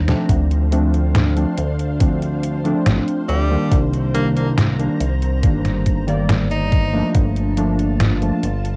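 Vaporwave at a slow 70 BPM, this hazy, nostalgic fragment opens on a drum fill, then warbly lo-fi synth keys, a glossy, nasal chorused synth bass with tube saturation, and a silky string machine drift through Dm7, Cm7 and Gm9 under a gentle room reverb and cassette softness. A detuned 8-bit drum machine with a fat, up-front snare and hi-hat is soon joined by a thumpy electronic kick, both carrying gritty 12-bit sampler texture. At 3.3 seconds an edgy tenor saxophone takes a short, forceful jazz-style solo with vibrato, scooped notes and tape echo.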